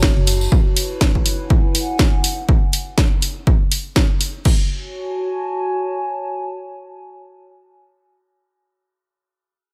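A bittersweet, energetic slice of piano house opens with a hollow, organ-like FM bass with sidechain pumping, a punchy analog kick, a garage-style kit with a cracking snare, hi-hat and crash, and a tambourine in the background, though the bass and tambourine drop away by 0.5 seconds. The swung kick and kit stay up front until 4.6 seconds, leaving a warbling, lo-fi, tape-like pad with chorus, its own reverb and sidechain pumping to carry on alone until 7.7 seconds. The overall sound is dry, cut from a longer piece.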